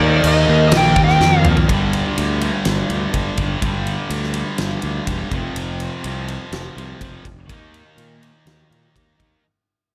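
A straight 4/4 groove carries this swaggering, anthemic hard rock excerpt. A biting, overdriven lead guitar melody and a very quiet, gritty tonewheel organ with slow rotary swirl and key click open it over a tight, bright distorted guitar riff and a warm hollow-body guitar riff, a growly fuzz bass, and a huge arena kit with a fat snare and punchy kick that enters at 0.2 seconds. After a drum fill, the lead and organ drop out by 1.7 seconds, and the riffing band moves through a new section of power chords as the sound fades out in a dry, close space.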